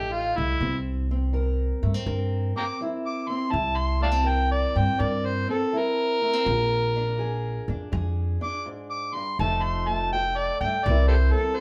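A swung 4/4 groove at 82 BPM sets a rollicking yet laid-back acoustic country blues in this short cut from a longer piece, moving through F7, C7 and Bb7. An amplified, gritty, overdriven harmonica takes a jazz-style solo up front for the full 11.6 seconds, full of tongue slaps and scooped notes, while a boxy parlour steel-string guitar fingerpicks a dark accompaniment beneath it. A woody, thumpy upright bass with gut strings plays pizzicato up front until 11.3 seconds, and the trio sounds captured live together in one room, bathed in a large studio reverb.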